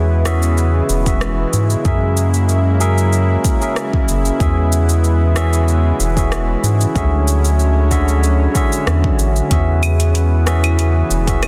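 A round, dark analog bass sits up front in this smooth, warm sunset chillout excerpt at 94 BPM in E lydian, beneath a barky tine electric piano played through a combo amp with low-pass filter and digital delay, a lush, detuned unison pad with chorus sustaining chords over E6, F#9 and Dmaj9#11, a smooth R&B kit of claves, metallic hi-hat, rim click and shaker with soft clipping on the snare that enters at 0.3 s, and a deep, layered electronic kick arriving at 1.1 s, set in light reverb with a dense, heavily limited modern master.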